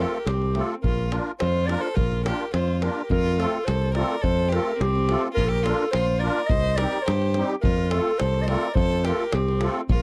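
A dry, close 1970s-style studio sound with lossy compression artefacts frames this festive, virtuosic Balkan wedding band fragment in straight 2/4 at 106 BPM, where a dark, distant clarinet carries the melody over an intense, vibrato-rich violin second line, a reedy, shimmering musette accordion, a growly, up-front fingered electric bass, and a deep davul entering at 0.3 seconds, moving through F, Bb and Cm.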